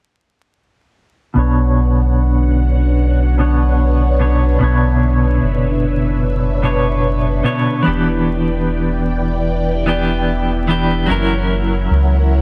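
A loping 74 BPM trip hop groove in 4/4 with a 58% swing on the sixteenths opens this dark, cinematic cut from a longer piece in B harmonic minor, where a round, deep dub sub bass with tube saturation sits up front, a dark, picked clean electric guitar entering at 1.3 seconds carries tremolo, tape echo and a filter sweep, and a mellow vintage string machine of cellos with phaser and ensemble chorus holds sustained chords from Bmadd9 through Em7 to F#7 at 11.1 seconds, all under light reverb and vinyl crackle.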